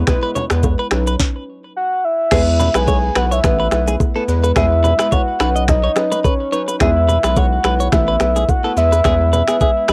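Romantic and sunny, this afrobeats excerpt rides a lightly swung sixteenth-note feel, captured as a lo-fi cassette home recording with little reverb. An up-front electronic afro-pop kit drives it with a knocking kick, sharp snare, rim click, finger snaps, shaker and crash cymbal, beside a deep, round analog bass that sits just as far forward, while very quiet congas and bongos add close, ringing acoustic color. A glassy, crystalline wavetable pluck with chorus and tape grain supplies the accompaniment, and a bright, twangy direct-recorded clean electric guitar picks a riff colored by warbly pitch drift and tape echo. At 1.8 seconds a full, dark octave-layered synth lead enters with the melody, carrying vibrato, chorus and tape echo up front. The harmony circles E, Badd9 and Asus2, with a brief stop from 1.2 to 2.3 seconds before the second section opens.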